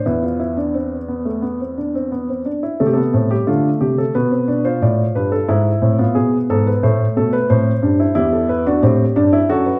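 A baby grand piano opens on an E5 chord at 0.1 seconds in this elegant, lively baroque-style three-part classical fugue at 89 BPM in straight 4/4, its intimate, natural, up-front tone carrying audible action noise and long sustain between E2 and D5 as the harmony moves through Am, Bm7b5, E/G#, Am and Em from 2.8 seconds, bathed in a wet recital hall reverb of 1.4 seconds within a dark production cut from a longer piece.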